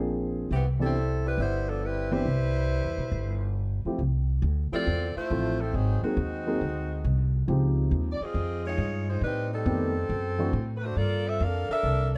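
Opening on a deep-toned concert grand piano and a woody, thumpy pizzicato upright bass, this energetic, brassy big band swing excerpt brings in a mellow saxophone section with light vibrato at 0.5 seconds to carry the melody up front beside the bass, while the piano accompanies until 10.5 seconds, all in light reverb with a dark production.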